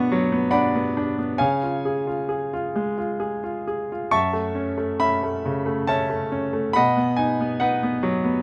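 This is a lyrical classical piece for solo piano, reflective and dark in mood. It moves in three-four time with a rubato feel, the pulse bending freely as the phrases unfold. A clear grand piano plays alone from 0.0 to 8.4 seconds, reaching from F#2 up to D6, with a natural tone and short sustain that sits up front. The harmony passes from Bmadd9 to C#, settles on F#m7 at 4.1 seconds, then turns to B. Close, detailed microphones and a light reverb frame the instrument in this brief passage cut from a longer piece.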